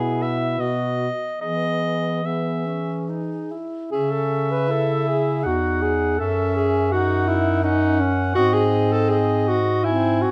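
A lyrical, serene classical piece in a gently flowing triple metre with rubato, played by a single-reed quartet and cut from a longer work. The soprano saxophone carries the melody with a smooth, warm top, the alto saxophone adds a second line coloured by vibrato, and the tenor saxophone fills in the accompaniment, all four parts sounding together from start to finish. An up-front, mellow bass clarinet anchors the low end with a soft attack, and a moderate stone-room reverb surrounds the ensemble as the harmony turns from major to minor at 3.9 seconds.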